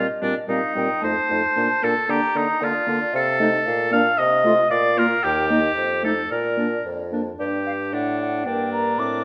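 In a straight two-beat metre, this quick classical-period movement for wind quintet, cut from a longer piece, carries a restless, stormy mood. A hollow silver concert flute takes the melody with a crisp attack and vibrato, sounding pure yet distant, while a clear oboe sits up front on the second line. Beneath them, a dark French horn with a smooth top and a warm clarinet set back in the background fill out the accompaniment, and a bassoon with light vibrato anchors the bass. All five instruments play together throughout, surrounded by a wet recital hall reverb. A new section begins at 7.4 seconds, moving from a G5 chord through D/A to arrive on a G minor chord at 8.5 seconds.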